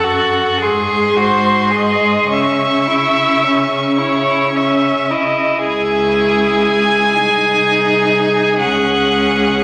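A clear first violin with light vibrato sings the lyrical melody high above a smooth, up-front second violin, a focused viola accompaniment and a distant, expressive cello bass that slides with portamento, in this serene, slow romantic string quartet movement in C# minor, flowing in a rubato 6/8 at about 35-41 BPM and bathed in wet concert hall reverb across 9.6 seconds cut from a longer piece.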